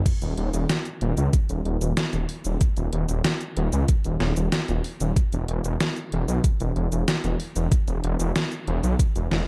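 A knocking electronic kick drum sits up front in this short synthwave clip, overdriven and layered, with the character of having been re-recorded in a small room. Beside it, a pop drum kit built from a deep snare, hi-hat, cabasa and crash cymbal carries the same gritty overdrive and close, upfront placement, running from 0.1 to 9.4 seconds. Underneath, a detuned saw bass spans Eb1 to Db2 with a thick, lush unison tone and a fast attack, its sustained notes saturated, chorused and shaped by sidechain pumping. The mood is uplifting and romantic, carried by a steady straight feel in 4/4. Light reverb and a dark, warm production tie the parts together across this single section, which is cut from a longer piece.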